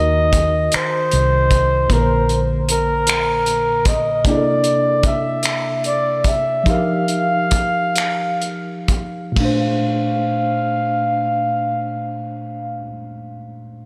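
Slow six-eight R&B with an intimate, warm mood, cut from a longer piece. A breathy, whispered flugelhorn carries the jazz-style solo melody up front over a worn, slightly out-of-tune tine electric piano, both touched with slapback echo. A dark, round, foam-muted electric bass drops out at 4.2 seconds, while a cloth-damped, thuddy kit of finger snaps, hi-hat, tight kick and dark ride cymbal plays until 9.6 seconds; the pace slows from 4.2 to 9.4 seconds as rich extended chords unfold inside a lush hall reverb that gives a big arena sound.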